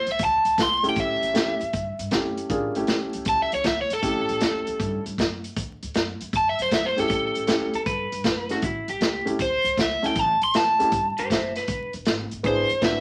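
Electric blues shuffle excerpt at 156 BPM with a swung, soulful and gritty feel in A mixolydian, led up front by an overdriven hollow-body guitar melody over thumpy pizzicato upright bass on gut strings, a muffled lo-fi vintage drum kit with a punchy kick, and a woody upright piano accompaniment, while a dark, slightly broken-up electric slide guitar adds a second line from 7.8 to 11.9 seconds, all set in a small room with vinyl crackle.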